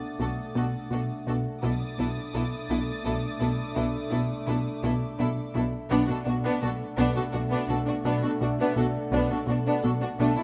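This cinematic suspense score excerpt moves in an uneasy, tense three-beat metre, built on hovering chords that shift from Bm7 to Asus4/B and back. A punchy, funky analog bass with a fast, decaying filter pluck drives a riff on a low B and sits forward of everything else, while a glassy, ethereal glass harmonica and a mellow, distant French horn section hold sustained chords in the background. Bowed strings played sul tasto fill out the middle: a studio violin section with light vibrato carries the intimate melody, a woody, lush studio violin section adds a second line, and a symphonic viola section keeps a dark accompaniment. Underneath, a very quiet, floating cello section and a close double bass section anchor the low end. High above, a pure symphonic violin section adds a faint texture until 5.5 seconds, returning briefly at 10.2 seconds. Close, detailed microphones and a moderate scoring-stage reverb give the ensemble clarity with a sense of space.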